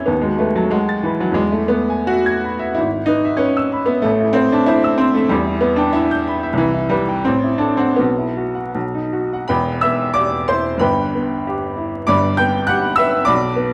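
Bittersweet and brooding, this romantic classical character piece for solo piano in 2/4 unfolds with a flexible rubato feel, its bright, woody upright piano sitting up front across a range from E1 to A6 as the harmony darkens from major into minor at 4.0 s before a new section begins at 9.5 s, all heard in a moderate recital-hall reverb with a layer of vinyl crackle in this fragment cut from a longer piece.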